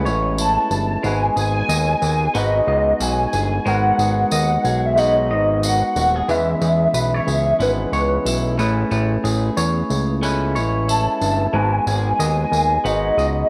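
A hollow, woody synth lead with a clarinet-like tone carries the melody from 0.4 seconds, its soft, mellow voice treated with phaser, ensemble chorus and a slapback echo. This hazy, sunny snippet of indie bedroom pop moves at 91 BPM in 4/4 with a gentle sixteenth-note swing. A fat, saturated analog bass sits up front, thick and nasal with a detuned sawtooth edge, while a clean, twangy electric guitar drifts with a lush chorus and warbly pitch wander. A barky tine electric piano, lightly overdriven through a combo amp, fills out the accompaniment, and a jingly tambourine sounds distant, as if in a large room. The harmony circles through Amaj9, G#m7 and E6, all set in a moderate echo-chamber reverb that adds to the dreamy glow.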